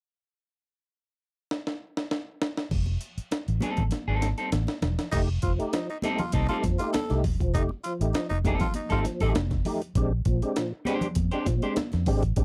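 Funky and gritty, this dry, close 1970s-style funk cut at 99 BPM in F mixolydian opens with a compressed, sampler-style breakbeat kit with a thumpy kick and high-tuned snare at 1.5 seconds, joined at 2.7 seconds by a round, foam-muted fingered electric bass and bright, high-tuned congas in the background, then a clean, picked electric guitar, and from 5.1 seconds by a raspy, growling tenor saxophone second line and fat, lightly overdriven tonewheel organ stabs with key click, chorus vibrato and slow rotary speaker over F9 and Bb13 chords.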